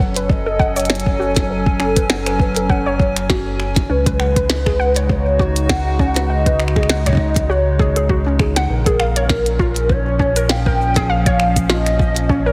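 Squeezed into a heavily compressed, radio-like sound with a moderate echo-chamber reverb, this intricate, glitchy IDM excerpt swings its sixteenths as a warbling, nostalgic lead with vibrato and delay sings over a hollow, flute-like pad pumping to the sidechain, a dusty lo-fi pluck tracing arpeggios through tape wear and digital delay, a round analog bass, a deep electronic kick, and a glitchy kit of tiny snare, clicky hats, cabasa and finger snaps.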